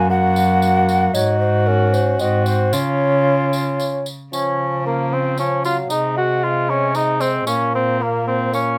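Courtly and festive, this short excerpt from a longer classical piece is a Renaissance-style consort dance in 3/4 at 114 BPM, set in Db major and tuned slightly below modern pitch at A4 = 438 Hz. A hollow, airy tenor recorder carries the melody from the background, its wooden tone showing a tongued chiff and vibrato. Up front, a dark cor anglais plays the second line with a punchy attack and smooth top, while a bassoon with light vibrato fills in the accompaniment and a single bowed cello anchors the bass with a gut-string, reedy richness. A jingly tambourine enters at 0.4 seconds, sitting low in the mix with a small-room feel. The close, detailed recording has little reverb, and the harmony moves from Gb through suspended and dominant chords to Db before the second section, beginning at 4.3 seconds, closes on Bbmadd9.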